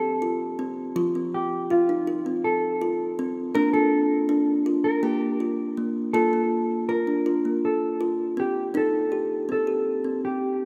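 A plucked kalimba sits up front, its woody, ringing tone on a solid board carrying a boxy small-room character as it spins arpeggios between F3 and G4 from the start until 10.4 seconds. This is gentle, meditative world music built on tuned percussion, moving at 162 BPM in eighths through a straight 7/8 metre, with tuning set at A4 = 437 Hz. A clean, dark hollow-body electric jazz guitar, played with the fingers and also placed up front, carries the melody from F4 to Bb4 across the whole 10.7 seconds, trailed by tape echo. The harmony rests on F, shifts to Bb at 3.6 seconds, and moves to C minor when a new section begins at 8.7 seconds. A lush, wet hall reverb with a 2.4-second tail surrounds the music, and the clip is cut from a longer piece.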